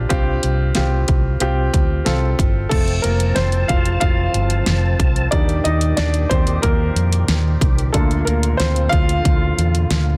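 Anthemic and uplifting, this piano-driven pop cut from a longer piece rides a straight 4/4 groove, with a clear, woody upright piano up front over a dark, foam-muted electric bass and an electronic drum kit of punchy kick, fat snare, crash and metallic hi-hats. At 2.7 seconds the piano steps into a solo as a reedy tonewheel organ enters with sustained chords, its key click, chorus vibrato and slow rotary speaker sitting low beneath the mix. The chords move from Csus4 through F and Eb to Bb/D, all set in digital ambience with a dense, heavily limited modern master.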